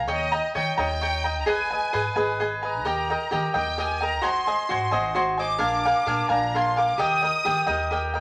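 Romantic and proud, this short mariachi clip moves at 87 BPM in a straight 6/8, with a smooth, vibrato-rich bowed violin section carrying the melody over a bright, crisp picked cavaquinho up front and a woody, thumpy pizzicato upright bass on gut strings, as the harmony travels from D#7 through G#m, G#7 and A#7 back to D#, all tuned to A4 = 444 Hz and set in a club-like reverb with a layer of vinyl crackle.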